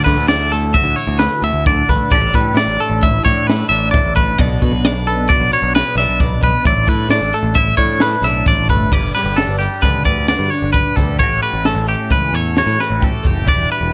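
Bright and playful, this short math rock and midwest emo excerpt moves at 132 BPM in 5/4, with an up-front, twangy clean guitar picking arpeggios through tremolo and plate reverb over a compressed twelve-string electric guitar picking chords through phaser and plate reverb, a punchy direct bass, and a crisp acoustic fusion kit with bright cymbals, a high-tuned snare and a tight kick in a pumping small room, as the chords travel from D69 through A7sus4 and Bm7 before shifting to Gmaj7 and A13 at 8.9 seconds.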